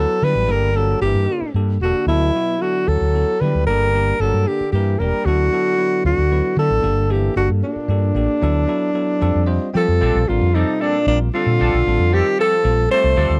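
In a 6/8 at 76 BPM with a straight feel, this slick, soaring jazz excerpt cut from a longer piece unfolds over a close, dry 1970s-style studio sound. A breathy alto saxophone carries the melody up front, its subtone and soft attack giving an intimate, whispered quality with vibrato. Beneath it, a clear, punchy trombone sits in the background with a second line, scooping into its notes, while a round, dark fretless bass anchors the bottom. A bell-like tine electric piano supplies accompaniment as the chords rock between Gmadd9 and D69, then slips in a short fill from 9.2 seconds over an F chord. At 10.0 seconds the music settles into Bb major on a Bbmaj9, and a twangy, picked electric guitar enters with stabs bathed in lush chorus.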